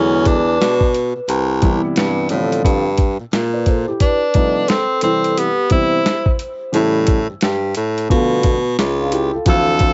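This mellow, nocturnal jazz-hop excerpt opens with four parts at once. An edgy tenor saxophone carries the melody over a warm concert grand piano, a vibraphone played with soft mallets and a clear baritone saxophone holding down the bass. At 0.3 seconds a dusty soul sampler-style drum kit joins with a thumpy kick, a medium-tuned snare and hi-hat, sitting compressed, gritty and up front at 88 BPM with a swung sixteenth-note feel. The tenor is punchy, forceful and present, singing with vibrato and scooped notes in a jazz style. The close-miked baritone shares that vibrato and scooping, while the piano's deep bass and the vibraphone's metallic, ringing tone, slow motor vibrato and analog delay fill in behind them. Jazzy chords such as E9, Cmaj7, G7sus4, Bm7b5 and A7 drift past in a small room, with the dulled top end of a home cassette recording giving it a lo-fi haze.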